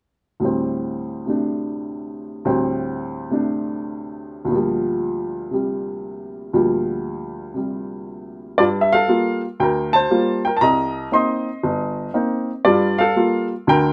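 Swung eighths at 118 BPM in 4/4 carry this cool, moody solo jazz excerpt in G minor, played on a lone upright piano tuned slightly above standard pitch to A4 = 445 Hz. The piano sounds woody and polished with a short sustain, sitting up front in a moderate studio reverb as it spans from deep G1 bass notes to C6 in the treble. The harmony opens on D7sus4 before settling onto Gm7 over D, then shifts at 8.6 seconds into a new passage that moves between Gm7 and Cm7 until the piece is cut at 13.9 seconds.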